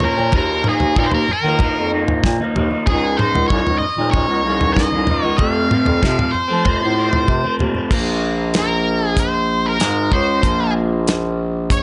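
Psychedelic rock at 95 BPM in Bb minor, trippy and dark, with an octave-fuzz lead guitar carrying the melody up front through wah, distortion and slapback echo over a twangy, slightly broken-up electric guitar riff run through phaser, a dry, damped 70s drum kit with dark cymbals and a tight kick, and low-tuned congas sitting in the background until 7.9 seconds. A vintage bass clarinet holds the low end from 0.2 seconds, and the harmony moves through Ebsus2, Dbadd9 and F before landing on Bbm. A drum fill at 7.4 seconds launches the lead guitar solo, all set in a small room with light reverb and a top end that stops short of 10.8 kHz in this excerpt from a longer piece.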